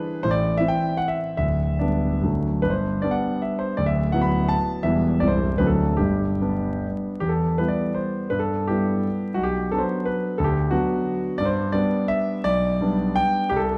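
A romantic classical triple-time dance in 3/4 for solo concert grand piano, proud and rustic in mood, moving with rubato between 132 and 192 BPM and built on dotted rhythms. The piano sounds clear and natural, sitting up front with a deep bass and long sustain across a range from C1 to B5, opening in G major before turning to E minor at 7.2 s. A moderate concert hall reverb and a dark production with vinyl crackle frame this short cut from a longer piece.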